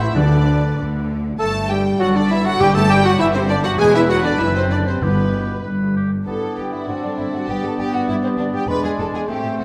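A rich violin section carries the melody with vibrato and portamento, sounding somewhat distant in this cheerful, lively excerpt from a quick classical-period movement for symphony orchestra in G major, taken at 99 BPM in 2/4 with a rubato feel. A second, close-miked violin section, a bright clarinet, an airy silver flute set in the background and a smooth-topped oboe weave supporting lines around it, while a very quiet viola section fills in the accompaniment. A tight French horn section holds sustained chords, and lush, soft-attacked double basses join a smooth, even cello section on the bass. Timpani played with hard mallets on calf heads sound close and dry from 0.2 to 5.9 seconds, and a vintage-toned bassoon enters at 6.3 seconds with a soft attack. The harmony moves from Bm/D through Gsus2, D13/F# and G toward E7, all set in a wet recital hall reverb.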